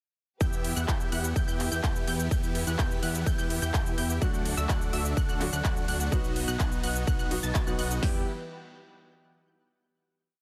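A dense, heavily limited master with little reverb carries this short, euphoric and emotional festival progressive house piece at 126 BPM in E minor, which launches straight into a drop at 0.4 seconds over a punchy, overdriven big-room kit with a four-on-the-floor kick, crisp hats, handclaps, cabasa and ride, while a fat, detuned analog bass and huge, detuned supersaw chords pump against the sidechain through Em, D and B. A lush, wave-folded unison pluck arpeggiates an octave above the supersaws with delay, and a very quiet bowed string section holds a soft, vibrato-laden pad beneath. At 4.2 seconds a muted, felt-dampened upright piano with audible action noise joins in the background with held, syncopated chords, and after a band accent at 7.5 seconds the piece resolves onto a final Em chord at 8.0 seconds.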